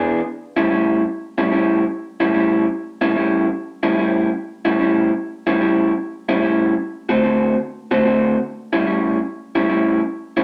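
A club room with moderate reverb frames this soulful, swaggering swung blues fragment, cut from a longer piece, in which a dark, slightly broken-up, lo-fi, compressed electric guitar through a small old amp sits up front as the solo voice, picked across its range from 0.0 to 10.4 seconds over an A7 that moves to D7 at 6.8 seconds and back to A7 at 8.5 seconds.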